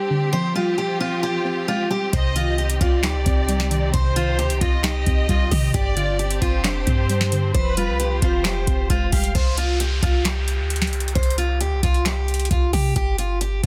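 A half-time trap groove at 133 BPM in 4/4 drives this eerie, melancholic hip hop fragment in C minor. A dark, woody picked parlour guitar carries the melody with delay, over a soft detuned pluck with chorus and lush bowed strings. At 2.1 seconds an up-front, overdriven analog drum machine with a deep kick, crisp snare, metallic hats and handclaps arrives alongside a boomy sine 808 bass, while a vibrato-rich violin section adds a second line with delay. From 9.3 seconds the strings, violins and pluck drop away, leaving guitar, bass, drums and an electronic downlifter in a dense, heavily limited small-room mix.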